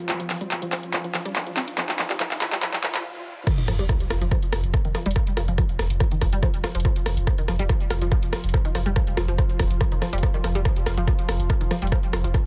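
Hypnotic and dark, this driving peak-time techno cut moves at 142 BPM in a straight 4/4, taken from a longer piece. It opens with a build-up: a punchy analog drum machine, up front and tape-warm, plays a fill of crash, handclaps, hi-hat and rim click, while a riser and sub drop sit in the background. A filter sweep on a synth arpeggio runs through the build alongside a bright, nasal unison pluck riff colored by tube saturation, phaser and digital delay. Beneath it hums a deep, moody ambient pad with chorus and its own reverb, joined until 3.0 s by a very quiet, warbling, nostalgic lo-fi pad. After a brief stop, the drop lands at 3.5 s with an impact and a punchy electronic kick, followed by a thick, saturated sub bass on F1, low-pass filtered and pumping against the sidechain along with the pluck, pad, hats and cymbals. The master is dense and heavily limited, with little reverb and a high-pass filter.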